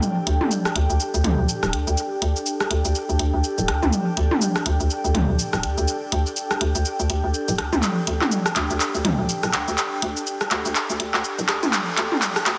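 Minimal techno at 123 BPM with a swung 16th-note feel, this quirky, cool excerpt is a build-up starting on a Dsus4 chord, with a filter sweep running throughout and a drum fill from 7.8 seconds. An overdriven, up-front house kit of handclaps, hi-hat and shaker sits in a large room. A tape-warm minimal click kit of rim clicks and toms adds dub echo from 0.4 seconds. A hollow, bouncy FM bass knocks in punchily at 0.3 seconds, while a soft, breathy pad drifts above with chorus and phaser, all bathed in a lush hall reverb and a dense, heavily limited master.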